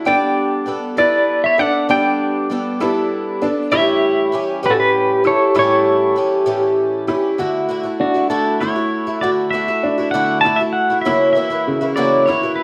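A boxy, shimmering twelve-string acoustic guitar with old strings and a brilliant upright piano with audible action noise open this pastoral, peaceful folk passage in D major, moving at a slow 66 BPM in 6/8 over a large, wet studio reverb. A dark, clean electric guitar carries the tremolo-tinged melody up front until 7.1 seconds, while a twangy, compressed pedal steel guitar played with fingerpicks and slide weaves a second line with volume swells. At 7.4 seconds the pedal steel takes a solo over the continuing guitar and piano as the chords shift from Gadd9 and A7 to Dadd9 and F#7.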